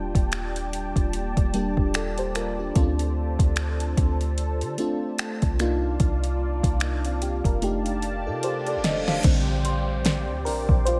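A slow 74 BPM groove with a lightly swung sixteenth feel carries this dreamy, smooth contemporary R&B excerpt in Bb major, where a soft, round 808-style bass and an up-front electronic drum kit with fat snare, metallic hats and finger snaps support a lush, mellow FM electric piano with chorus and phaser over a detuned sawtooth pad moving through Ebmaj7, F69 and Cm11, before a drum fill at 7.6 seconds, a background reverse cymbal and downlifter at 8.6 seconds, and an electric piano solo from 9.2 seconds on Bb69 joined by a bell-like, slightly out-of-tune celesta with tape echo.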